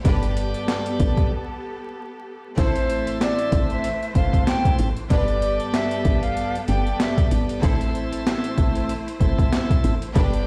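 A swung, head-nodding boom-bap groove drives this moody, gritty hip-hop fragment, with the sampler-style kit sitting up front: a thumpy kick, a high-tuned snare and hi-hat, all compressed, pitched down, overdriven and re-recorded in a large room. Underneath, a woody FM bass keeps to the low end with a soft, round, quickly decaying tone, while a lightly overdriven tonewheel organ supplies piping, scooped accompaniment through a slow rotary speaker. A lush, bowed string section holds sustained chords, and a second, closer string ensemble tucked in the background adds intense, vibrato-laden stabs trailed by delay. After a short break at 1.3 seconds, a breathy concert flute carries the melody from 2.6 to 7.3 seconds, tongued and expressive with vibrato and rolled-off highs. The harmony alternates between Gadd9 and A minor, and the whole mix sounds as if played on a big sound system in a bare stone room, with vinyl crackle adding dusty grit.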